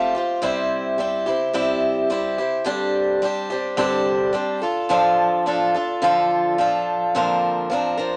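A straight 4/4 pulse carries this short rock excerpt, cut from a longer piece, with a nostalgic yet hopeful mood. A single picked acoustic guitar in a swing style plays alone throughout its 8.2 seconds, sitting up front with a bright, boxy tone and audible finger squeak. The harmony moves from C to Gsus4, then Dm, and settles on Bbadd9 near 7.1 seconds. A moderate studio ambience gives the guitar a modest sense of space. Vinyl crackle and a dulled top end lend the recording a vintage, worn character.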